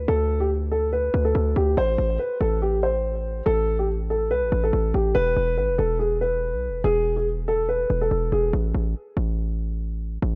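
A dark concert grand piano and a hard-hitting 808-style bass open this tense, menacing drill excerpt together, moving at 142 BPM in 4/4 with a half-time feel. The piano carries the melody between G4 and C5, its mellow, boxy tone sitting up front with deep low resonance and the intimate, audible noise of its action. Beneath it the 808 holds the bottom from E1 to D2, a punchy sine with a noise layer, a fast attack and a decaying tail. The harmony moves from a D5 power chord to A minor at 1.8 seconds and on to E at 5.2 seconds. At 8.5 seconds the piano drops out for a break, leaving the bass alone in light reverb and studio ambience until the fragment ends at 10.4 seconds.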